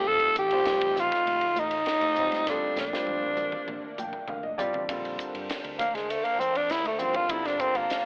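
A growling, breathy tenor saxophone leads this driving, slick 8-second electric jazz fusion excerpt at 100 BPM, moving into a solo at 4.9 seconds over an intimate grand piano with audible action noise, lush chorused string machine chords, a round fretless bass, a crisp drum kit with a punchy kick and fill from 2.5 seconds, and very quiet high-tuned congas, all through a telephone-like filter with light reverb.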